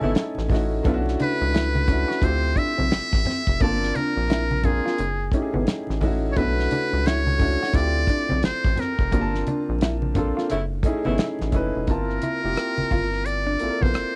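A groove in 4/4, swung on the sixteenths, carries this smooth, late-night R&B and neo-soul passage, cut from a longer piece. A damped 70s drum kit with a fat snare, tight kick, hi-hat and rim click comes in at 0.2 seconds over a rubbery, bouncy square-wave bass with a nasal filter pluck, while low-tuned congas ring in the background. A warm concert grand piano with deep bass carries the ninth chords, and an electric guitar through a small old amp adds a slightly broken-up, picked second line; both carry a cassette tape coloring. Up front, a trumpet with a metal mute plays a buzzy, brilliant jazz-style melody with vibrato and scooped notes. An edgy saxophone section plays short stabs at the very start and again at 10.5 seconds, treated with analog delay, the band hits accents together, and the harmony moves to a Gm11 at 11.9 seconds, all within light reverb and a home-cassette sound.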